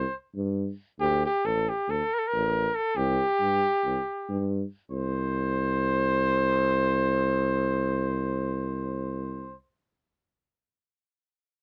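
Fiery and virtuosic, this short cut from a longer Balkan folk piece in free time pairs a warm, vintage flugelhorn melody with light vibrato against a mellow, roomy tuba bass, both played in a classical style, over D5 and C5 chords in a dry, close 1970s-style studio sound.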